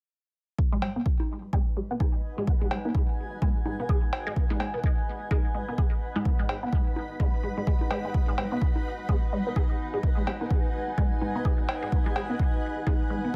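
Minimal techno at 127 BPM in G# minor, this short excerpt cut from a longer piece has a cool, clinical mood and a swung 16th-note feel, resting on a single G#m7 chord. A deep, up-front electronic kick drum anchors the groove from 0.6 s, joined almost at once by a resonant blip pluck riff, a juicy, squelchy sawtooth sound with a sub octave, moving notch and phaser, a subtle chorus and digital delay. A filter sweep runs across this synth arpeggio for the whole passage. Cowbell and bongos add tape-warm, analog-toned percussion with digital delay, while a granular cloud pad enters at 1.4 s, blurred and evolving, its mellow sine tones carrying built-in reverb. Both the pad and the pluck are pumped by sidechain compression, and light reverb places the mix in a modest space.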